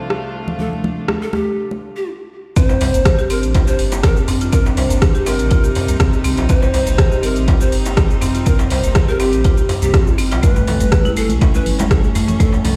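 This earthy, driving afro house passage opens on a distant chamber string section holding rich, gut-string chords with light vibrato, pumping against a sidechain, as an overdriven deep house kit of metallic hi-hats, cabasa and rim clicks arrives with close, dry congas played with soft hands. Breathy cane pan pipes carry the melody above, their chiff and crisp attack trailed by tape echo. After a brief stop from 2.1 to 2.6 seconds, the drop lands at 2.6 seconds with a deep, up-front overdriven kick, a crisp metal-shell darbuka, and hard-mallet marimba arpeggios on rosewood bars, dark and woody, pumping and echoing. A round sine sub bass with tube saturation follows just after, anchoring the groove beneath a Cm9 chord. The congas return at 10.4 seconds as the chords turn, and the whole passage sits in a stone-walled room sound, as if played through a big system in a bare space.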